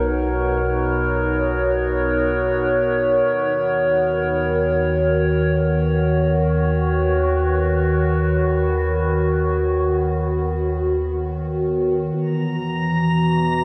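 Ambient in free time, luminous and weightless, cut from a longer piece: a warbling, detuned, tape-like pad sits up front holding mellow sustained chords from Bmaj9 to D#m7, over a round sine sub bass and a bright, wave-folded drone whose resonant overtones shift through a moving notch. At 12.3 seconds, just after the harmony moves to Emaj7(no3), a glassy texture of drifting harmonics enters high on a single note. The pad, drone and glass texture carry chorus, and the piece sits in a wet concert hall with a 2.3-second reverb tail.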